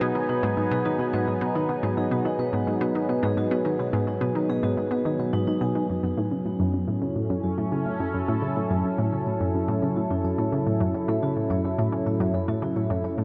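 Mysterious and hypnotic, this is ambient, sequencer-driven space music in a straight 4/4, heard as a short cut from a longer piece. A sweeping resonant pad holds sustained chords throughout, its airy, evolving tone treated with chorus, while a round, nasal analog pluck repeats a low riff up front with chorus and tape echo. A vibraphone played with medium mallets, motor off, spins metallic, ringing arpeggios through tape echo, with a filter sweep on it over the first 5.9 seconds and a fade-in after that point. During those opening seconds a very quiet bubbling texture of random filter steps sits on a single high note, then stops at 5.9 seconds as the harmony moves from G#m7 to F#m7. A huge, wet ambient reverb with a long tail surrounds the whole mix and gives it a vast, floating depth.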